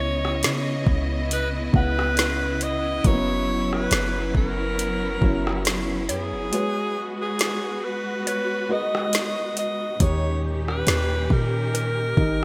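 A bright, 1980s-style digital production set in a lush hall frames this moody, longing contemporary R&B excerpt in G# minor at a slow 69 BPM, with a gentle 16th-note swing. A clear, up-front alto saxophone with vibrato and digital delay carries the melody over a felt-muted upright piano, sustained chords from a bowed symphonic string section, and a deep, boomy 808-style bass, while a very quiet, woody FM synth pluck adds a warbling, chorused texture. An electronic drum kit with a woody snare, metallic hats, rim clicks and gated reverb enters at 0.2 s, its soft kick dropping out between 6.5 and 10.0 s as the harmony moves from C#m9 through F#7sus4 and G#m11 to D#7.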